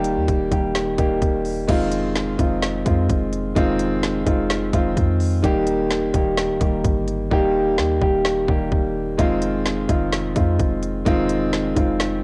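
Trap hip hop at 128 BPM in a half-time feel, menacing and melancholic in F minor, where a dark, mellow grand piano with cassette tape coloring sits up front over a deep, boomy sine 808 bass and an electronic trap kit of hard-clipped kick, woody snare, crisp hi-hats and crash roughened by 12-bit sampler grit and tape, set in light digital reverb on a home cassette recording, with the hi-hats dropping out from 7.3 to 9.2 seconds as the chords move between Eb and Fm7.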